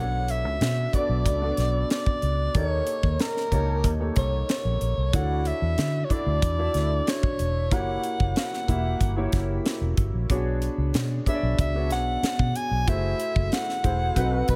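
A polished studio sound with a small room ambience gives this short cut from a longer piece of 1980s jazz-funk pop a close, slick finish. At 93 BPM in a straight 4/4, the mood is bittersweet, moving through rich chords such as Bm9, D#7#11, Dmaj9, F#7b9 and F#m7b5. A breathy soprano saxophone carries the melody up front in a jazz solo style, mellow and whispered, with vibrato, subtone, soft attacks and scooped notes. A concert grand piano accompanies from the start with an open, long-sustaining tone, deep bass and a lush chorus effect. A vintage muted fingered electric bass sounds dark, round, foam-muted and amped, punchy and close to the listener. A crisp fusion drum kit enters at 0.3 seconds, airy and acoustic, with hi-hat, a high-tuned snare and kick drum.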